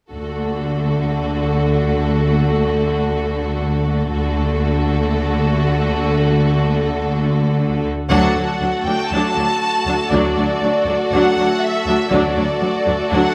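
Set in the lush, reverberant space of a scoring stage, this triumphant, majestic cinematic orchestral excerpt in D major at 120 BPM opens on a D chord with smooth, vibrato-rich bowed strings, violins carrying the melody over a distant second violin line, background violas, clear cellos and up-front double basses, until a band accent at 8.1 seconds brings in warm, lightly vibrato French horns sustaining chords in the background.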